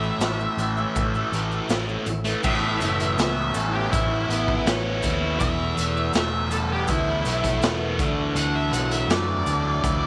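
Opening on a bright, double-tracked fuzz guitar riff with phaser up front, a dark octave-fuzz lead guitar, a round, amped fingered bass, a fat, slow-rotary tonewheel organ and grainy maracas, this hypnotic, trippy psychedelic rock excerpt at 81 BPM brings in a gritty garage drum kit with a boomy kick at 0.2 seconds, and from 2.4 seconds a buzzing, shimmering tanpura drone joins as the lead guitar takes a solo with tape echo over chords moving from Aadd9 through Esus4 to Dadd9, all in a small room with light reverb.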